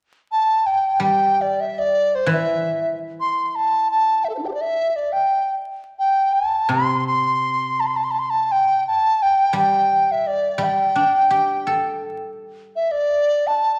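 Graceful and festive, this short rubato fragment of Chinese traditional chamber music, cut from a longer piece, sets an up-front large dizi with a reedy, buzzing-membrane tone and vibrato singing the melody, while a silvery, ringing guzheng played with fingerpicks joins in accompaniment at 1.0 seconds, pauses at 4.4 seconds and returns at 6.7 seconds, all heard in a wet recital hall reverb beneath a layer of vinyl crackle.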